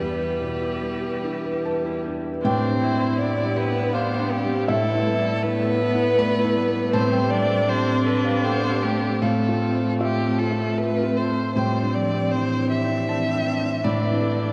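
Melancholic and reflective, this neoclassical excerpt for piano and strings drifts in a rubato 3/4 at around 70-82 BPM, with an expressive solo violin singing the melody with vibrato and portamento over a rich, focused cello line, a soft felt-muted upright piano up front, an even bowed viola and ringing fingerpicked harp arpeggios in the background, all bathed in a cathedral reverb with a 4.8-second tail as the chords move from Em7 toward Am7 and Fmaj7/A.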